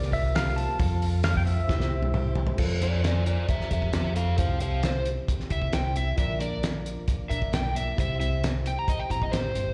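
Folk rock with a heartland rock drive at 134 BPM in C mixolydian, this jangly, open-road live clip, heard through a venue's PA with recital-hall reverb, opens with a clean, fingerpicked pedal steel melody carrying slapback echo over a bright, picked acoustic guitar in the background, a reedy electric piano and a very quiet, flute-like tonewheel organ with key click and slow rotary, all anchored by a round, punchy hollow-body bass and a cloth-damped, thuddy drum kit with a fat snare and dark cymbals, whose fill from 1.7 s leads into an up-front, overdriven slide guitar solo entering at 2.8 s with its own slapback echo over chords moving through C7sus4, F, C and Bb.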